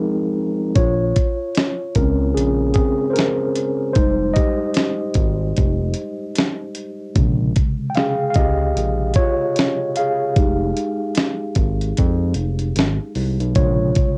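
Nostalgic and hazy, this lo-fi hip hop excerpt opens with a mellow tine electric piano alone, its clean, warm tone softened by a low-pass filter and cassette tape before it carries a solo from 0.8 seconds over chords moving between Fm7 and Bbm7. A smooth sawtooth-and-square synth bass with a fast attack, sustained notes and vibrato joins at 0.8 seconds alongside a dusty, sampler-style drum kit, gritty and compressed, with a thumpy kick, fat snare and hi-hat, re-recorded in a small room and run through cassette tape. The swung groove sits under light reverb with the feel of a home cassette recording.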